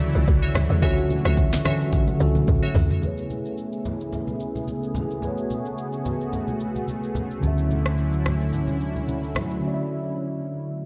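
Dark, softly reverberant amapiano at 109 BPM in A major, relaxed and warm, where a mellow tine electric piano and a chorused, sidechain-pumping analog pad hold Dmaj9 and Amaj9 chords while a hollow, bouncy log drum bass sounds until 2.9 seconds and glassy wavetable pluck stabs with tape echo ring until 2.7 seconds, an up-front afro-pop kit with deep kick, sharp snare and metallic hats plays a fill before a filter sweep at 3.0 seconds, distant low-tuned congas sit in the background, and a round, punchy fingered electric bass enters at 7.4 seconds before the drums stop for a break at 9.6 seconds.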